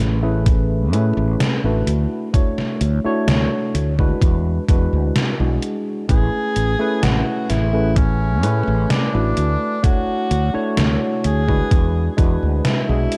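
Vaporwave at a slow 64 BPM in 4/4 and A major, this nostalgic, faded excerpt is cut from a longer piece and cycles through Amaj9, Dmaj7 and E7 twice. A worn, slightly out-of-tune tine electric piano carries the chords from the start, lightly overdriven through a combo amp with analog chorus and delay, while a mellow fretless electric bass sits beneath it, round and punchy. At 0.5 seconds the drums arrive: a thumpy, tape-warm electronic kick and an 80s digital drum machine supplying hi-hat and an overdriven snare wrapped in gated reverb, both sampler-style and re-recorded in a large room. A clear tenor saxophone enters at 6.1 seconds with a classical-style solo line, light vibrato and tape echo, sounding distant and roomy behind the up-front rhythm section. The whole production has a dark, warm, cassette-tape character with light reverb.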